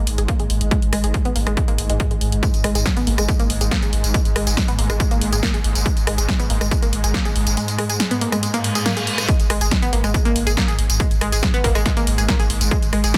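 An overdriven, layered kick sits up front in this dark, relentless peak-time techno excerpt at 140 BPM, driving alongside a dry, punchy analog drum machine of hi-hat, rim click, snare and tambourine, a round, deep sine sub bass pumping under the kick, a nasal, detuned sawtooth pluck riff colored with chorus, phaser and delay, and a swarming, granular drone that hangs tense through it all, while a filter sweep runs across the synth arpeggio until an electronic reverse cymbal at 8.6 seconds leads into the drop at 9.3 seconds, all packed into a dense, heavily limited mix with light reverb.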